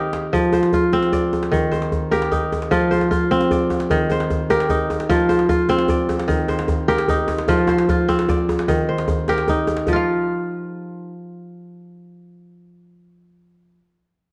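A drum fill opens this flowing, hypnotic excerpt of West African string and xylophone music in a straight 12/8, as a bright, ringing kora spins fingerpicked arpeggios over a tight, cracking djembe with metal rattles and hard hands that drops out at 10.1 seconds, the two sitting up front in a dark production bathed in lush recital-hall reverb while the harmony rocks between F5 and Eb before falling away to unaccompanied kora.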